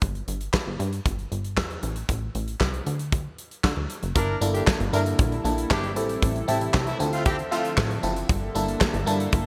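Late-night and funky, this short cut from a longer early-eighties boogie funk piece moves at 116 BPM in a straight 4/4, sitting in G dorian. A plucky analog bass with a punchy, fast-attack, decaying filter pluck and an acoustic studio drum kit open together, the kit's punchy kick, medium-tuned snare, hi-hat and handclaps set up front and treated with gated reverb. At 4.2 seconds the harmony shifts from Em, Am and D to a richer run through Gm69, Am7 and Dm9, as a shimmering, detuned pulse-width pad fades in slowly behind the groove and a horn section adds a smooth-topped second line with light vibrato until 7.7 seconds. A glassy FM electric piano with a bell-like attack joins at 4.4 seconds, its accompaniment colored by chorus and phaser. The bright digital production and small room reverb give the whole a tight, retro-eighties sheen.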